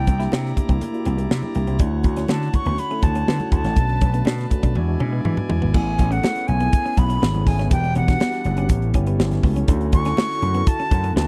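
A breathy, close-miked silver flute carries the expressive, tongued melody over punchy slap bass and a tight, up-front funk kit in this breezy, urban slice of polished 1980s jazz-funk pop, cut from a longer piece. Mellow tine electric piano with subtle chorus, a compressed clean guitar riff drenched in lush chorus, nasal cornet-stop pipe organ chords with a touch of chiff, and very quiet ringing congas fill out the arrangement, moving through jazzy chords such as C9, Dmaj7 and Amaj9. The sound is dry and close in a 1970s studio style, and a drum fill at 4.8 seconds leads into the second section at 5.7 seconds.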